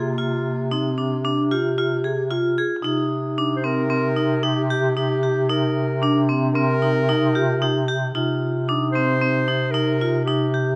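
A breathy, up-front bass clarinet holds a low C with jazz-style vibrato and scooped notes beneath a clean, close-miked clarinet melody in classical style, while one vibraphone rings dark and metallic with hard-mallet arpeggios and another adds a vintage, band-limited second line with medium mallets, both shimmering with slow motor vibrato, in this restless, pensive piece of contemporary chamber music in 5/4 at 113 BPM in C minor, moving from Bb7(no3)/C to Cm7 and then F7sus4/C at 8.2 seconds under light reverb.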